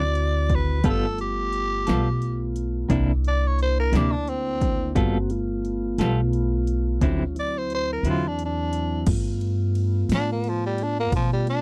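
This slow blues in 12/8 is a rollicking, soulful fragment of a longer piece, led by a raspy, growling tenor saxophone with jazz-style vibrato sitting up front. Beneath it, a clean electric guitar picks a tremolo-treated accompaniment, and a woody, thumpy upright bass is plucked on steel strings. A mellow, flute-like tonewheel organ holds soft chords through a slow rotary speaker, while a punchy analog drum machine, overdriven and re-recorded in a large room, supplies crash, ride, hi-hat, kick and snare. Over shifting ninth chords, the kick and snare drop out at 8.0 seconds, and the guitar stops at 8.3 seconds. From 9.1 seconds the saxophone takes a gritty solo, and the whole track has a dry, close 1970s-style studio sound.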